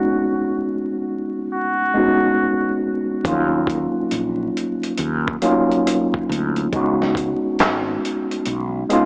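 This nostalgic, melancholic lo-fi hip hop fragment, cut from a longer piece, opens with a worn, slightly out-of-tune tine electric piano playing up front through overdrive, cassette tape and a low-pass filter, joined at once by a buzzy, thin trumpet with a metal mute. The trumpet plays a brief jazz-style solo line on Gb4 with light vibrato and scooped notes, sounding distant and roomy under a low-pass filter and tape echo, and it stops at 2.8 seconds. At 3.2 seconds a dusty, gritty sampler-style drum kit enters with a thumpy kick, medium-tuned snare, hi-hat and handclaps, swung on the sixteenths and re-recorded in a small room. A dark, round fretless electric bass enters at the same moment, holding the low end until 8.8 seconds. The harmony moves from Db7sus4 to Ebm9 and back, all set in light reverb with vinyl crackle and a small-speaker sound.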